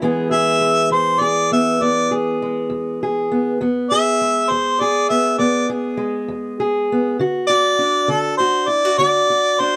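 A slow 12/8 pulse sets the pace for this gritty, soulful snippet of acoustic country blues, cut from a longer piece, with a fingerpicked parlour steel-string guitar supplying a boxy accompaniment from the first moment. At 0.3 s a warm, roomy harmonica takes the melody in a jazz-inflected solo, sitting up front with light vibrato and scooped notes. The harmony moves from E to D at 7.2 s, all captured in a dry, close 1970s-style studio sound with a small room's reverb.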